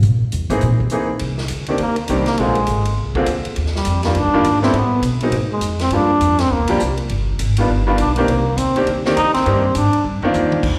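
A muted trombone leads this cool, late-night excerpt of small-group swing and bop in C minor at 204 BPM, entering at 1.8 s with a buzzy, breathy tone and a smooth top, sitting up front with plate reverb and slapback echo. A woody, gut-strung pizzicato upright bass opens with a brief solo, and a clear vintage upright piano with long sustain, also carrying plate reverb and slapback echo, accompanies through chords such as Cm9, Bb9 and Ebmaj7. A natural-sounding drum kit with a punchy kick and a medium-tuned snare sits low in the mix and adds a fill at 10.0 s, all heard in a moderate club reverb as if through a venue's PA.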